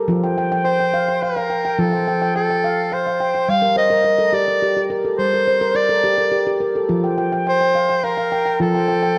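Ringing handpan arpeggios struck with soft fingertips on nitrided steel open this hypnotic, meditative world excerpt at 106 BPM in 3/4, joined at 0.6 s by a clear, close-miked soprano saxophone playing a classical-style solo melody with vibrato and a soft attack, both parts up front and carrying tape echo over F, G minor and F chords, all set in a wet echo-chamber reverb with small-room ambience and the worn, warbling pitch drift of old cassette tape.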